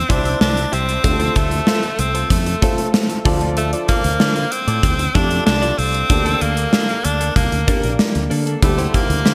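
A lush hall reverb and bright digital sheen frame this moody, urgent excerpt of 1980s-style pop, with a punchy gated drum kit sitting up front in a stony room. An edgy, forceful tenor saxophone carries the melody with vibrato and scooped notes, backed by a warm, polished grand piano, a round, dark fretless bass, and a clean, picked electric guitar riff tucked in the background with subtle chorus and delay. The chords move from C through F and Dm to Gmadd9/D, settling on C/D at 8.6 seconds.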